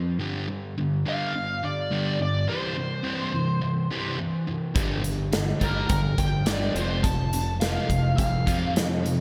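A straight 4/4 classic rock groove at 105 BPM drives this swaggering, brooding fragment: a sludgy, double-tracked overdriven guitar riff sits up front from the start, a dark, smooth picked lead guitar melody with wah and slapback echo enters at 1.1 seconds, and a growling, bright fingered bass joins a big acoustic rock kit with a punchy kick and medium-tuned snare at 4.8 seconds, the whole set in a lush hall reverb that gives an arena-sized sound.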